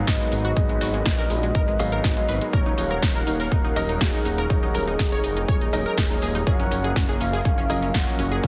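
A punchy, up-front electronic kick drives a straight progressive house groove, joined by the big-room dance kit's layered snare and sidechain-pumped hats, a very quiet gritty, overdriven breakbeat sampler-style kit with hi-hat, shaker and snare, and a grainy tube shaker in the background, while a barely audible impact marks the opening 0.6 seconds. Beneath the dreamy, driving mood, a deep, rumbling detuned saw bass and a smooth, dark analog pad both pump against the kick, and a lush, bright unison pluck spins delayed arpeggios as a natural-toned baby grand piano adds background stabs over the Abm7, Ebm7 and Gbmaj7 chords. A full, round octave-layered synth lead carries the melody with chorus, phaser, vibrato and delay, all within a dry, heavily compressed radio-style sound.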